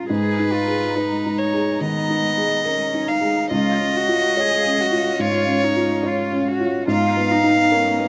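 This fragile, reflective neoclassical piece for piano and strings opens with a felt-muted upright piano, a cello and a chamber string section sounding together, and a violin melody joins at 0.1 seconds. The upright piano carries the accompaniment with a mellow, boxy tone from its thick felt, and its action noise is audible up front. The violin sits close and floating, drawn sul tasto with an airy bow and soft attack. Beneath it, the single cello traces a second line, warm with light vibrato. Farther back, the dark string ensemble holds sustained chords, moving from G#madd9 to C# at 3.5 seconds and back to G#madd9 at 6.9 seconds. The free, rubato phrasing and dry, roomless sound keep the passage intimate, and it is cut from a longer piece.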